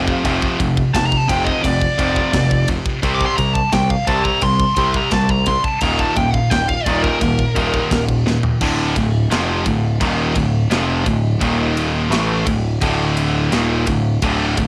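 A smooth, dark overdriven lead guitar opens this epic, heavy metal excerpt, playing a solo melody that ranges from Bb4 up to D6 until it stops at 8.0 seconds. Beneath it, a bright high-gain guitar and a sludgy, overdriven guitar sitting in the background both churn out riffs in D phrygian at a straight 86 BPM in 4/4. A growly, overdriven picked bass plays low underneath, while a metal drum kit with bright cymbals, a medium-tuned snare and a tight kick enters at 0.1 seconds and plays a fill just before the second section begins at 8.6 seconds. The chords move from F5 through C5 and Eb5 before settling on Dm, then Eb5 and D5 close the passage. The sound is dry, with little reverb, and carries the grainy character of a home cassette recording on the guitars and drums.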